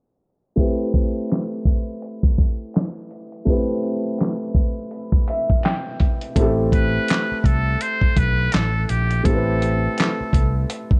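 A swung 83 BPM groove in 4/4 from a gritty, compressed sampler-style drum kit, with a thumpy kick, fat snare, hi-hat and handclaps, anchors this nostalgic, reflective lo-fi hip hop excerpt in A minor, opening on an Am9 chord as a dark, woody upright piano with cassette-tape character plays accompaniment under a filter sweep and adds a fill from 4.9 to 6.4 seconds. At 6.4 seconds a round, amped fretless electric bass enters up front, and shortly after a breathy, buzzy trumpet with a metal mute takes a whispered, intimate jazz-style solo. The whole piece sits in a digital ambience shaped by a low-pass filter, and it is cut from a longer piece.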